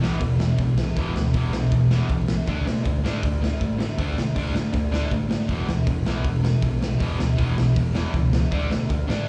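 Rebellious and energetic, this short punk rock clip, cut from a longer piece, has two distorted electric guitars playing a riff that moves between E5 and D5 chords: one bright and compressed, the other dark and overdriven, both sitting in the background. A bright, growly picked electric bass punches alongside them. Up front, a raw garage drum kit with a punchy kick, medium-tuned snare and hi-hat sounds gritty and saturated with a rolled-off top, all heard as a live gig through the venue's PA with light club reverb.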